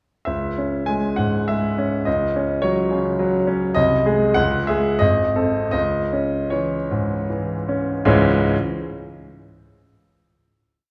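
Stormy yet bittersweet, this brief romantic character piece for solo piano unfolds in C# minor and 3/4 time, with a rubato feel and a tempo moving between 75 and 108 BPM. A clear grand piano carries the whole piece, pairing a single-line melody with rocking broken chords across a range from G#1 to G#5. The harmony circles around C# minor, passing through F#5/C# and G#/B# before settling through G# back to C# minor at 5.7 seconds. From 2.9 seconds the music slows down, drawing the phrase toward its close, and the piano stops at 8.6 seconds as the final chord rings on until 10.0 seconds. The instrument sounds natural and up front, even as the recording places the listener further back in a recital hall whose wet reverb lingers for 1.8 seconds.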